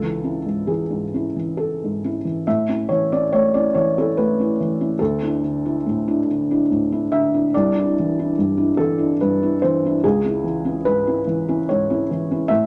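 Hopeful and peaceful, this brief excerpt of neoclassical minimalist piano drifts along at 72 BPM in 3/4, its beats uneven and pulled about with rubato. A single felt-muted upright piano carries the whole piece, playing alone from 0.0 to 12.7 seconds across a range from C2 to E5. Its tone is soft, mellow and intimate, the thick felt giving it a muted, warm quality, and it sits up front in the sound. The harmony moves from C#m to A, then through Dsus2 and Cadd9 before settling back on C#m at 10.0 seconds. A moderate studio reverb adds a gentle sense of space, while the top end stays subdued, keeping the overall sound dark and close.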